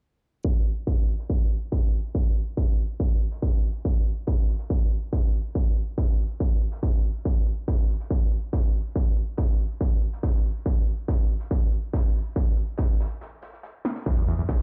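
A layered electronic kick drum with distortion opens this relentless, intense slice of driving peak-time techno at 141 BPM alongside an airy, polished brushed shaker and snare drum in the background, the kick sitting up front over them and a punchy, tape-warm analog drum machine snare and hi-hat, the mix sounding as if played on a big sound system in a bare room with large reverb and a filter sweep running throughout, until a break at 13.2 s and a drum fill at 13.8 s usher in at 14.1 s a screaming, squelchy, resonant sawtooth acid line on E2 with lush chorus and sidechain pumping.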